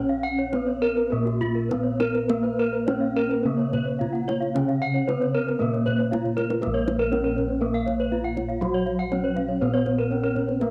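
Cut from a longer piece, bronze metallophones ringing with the shimmering beats of paired tuning, a melody line and two arpeggio lines, all with a cassette-tape tint, sound over round, close-miked bossed gongs carrying a transformer-saturated bass, with a tight kendang sitting dry in the background, in a hypnotic, brilliant Balinese gamelan excerpt in Bb pelog moving at 102-120 BPM in straight 4/4; an airy, up-front horn-mallet metallophone accompaniment joins at 2.3 seconds, and a kendang fill at 6.2 seconds ushers in a new section, all in a small, lightly reverberant room captured on a home cassette recording.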